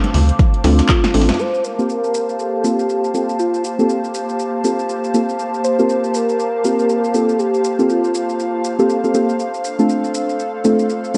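Warm and moody, this deep house excerpt at 120 BPM in G minor, swung on the 16ths and set in a lush hall with cassette tape color, layers an airy, breathy pad with pumping sidechain under a deep, warbling chord stab carrying a filter sweep and tape echo, while a punchy deep house kit with metallic hats, overdrive and 12-bit grit runs throughout, and soft-handed congas, a rubbery, bouncy square bass, a gritty, pitched-up breakbeat kit and an overdriven electronic kick all sound only in the opening 1.4 seconds, ending with a drum fill, as a velvety synth lead with vibrato sings from 0.9 to 9.1 seconds over chords moving from Dm7 to Gm11 and back.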